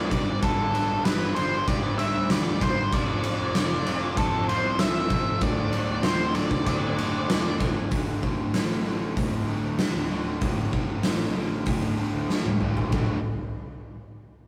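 An oversized, low-tuned acoustic drum kit sits up front in this bittersweet, restless quiet-loud alternative rock excerpt, with a punchy kick, a fat snare and dusky cymbals ringing in a stone-room ambience, and it closes on a fill at 12.3 s. Over the opening passage, an octave-fuzz lead guitar carries a dark, distorted melody until 7.6 s, while a tonewheel organ, shouting and lightly driven through a slow rotary speaker, holds sustained chords so faintly it is barely audible. Beneath them, two guitars grind out riffs in the background through the whole passage: one biting, picked and warm, the other compressed and coloured by spring reverb. A growly fuzz bass, direct and amped with a bright edge, anchors the low end behind them. The rough rehearsal-room recording, with its light reverb, gives the piece a raw, unpolished feel as it moves from its opening section into a riff-driven stretch after the organ drops away at 7.9 s.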